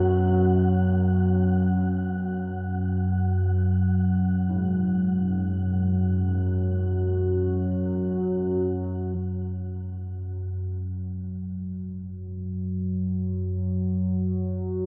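A huge, cavernous reverb with a long decay surrounds this desolate dark ambient drone, cut from a longer piece and unfolding in free time around an F#sus24 sonority. Up front sits an analog drone, a warbling, detuned blend of sawtooth and pulse waves with pulse-width modulation and chorus, swelling in slowly and sustaining low throughout. High above it, a breathy, wind-like tuned noise texture with its own reverb fades out over its run and drops away at 9.2 seconds. Also from the start, old church bells play very quiet arpeggios with a bronze, clangorous ring, their padded strikes mellow but beating, until they stop at 11.6 seconds. From 9.2 seconds a filter sweep moves across the drone, which carries on alone after the bells fall silent until the end at 14.9 seconds.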